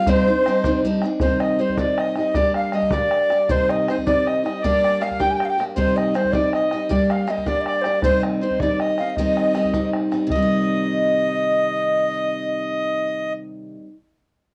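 Celtic folk jig in C minor at 106 BPM in 6/8, spirited and wild, cut from a longer piece, where an airy wooden flute with vibrato, crisp attack and plate reverb carries the melody over a reedy, dark accordion second line and an up-front picked steel-string acoustic guitar with fresh strings, while a damped, tight bodhran drops out at 10.5 seconds, all in a small, wet room heard through worn, warbling cassette tape with pitch drift.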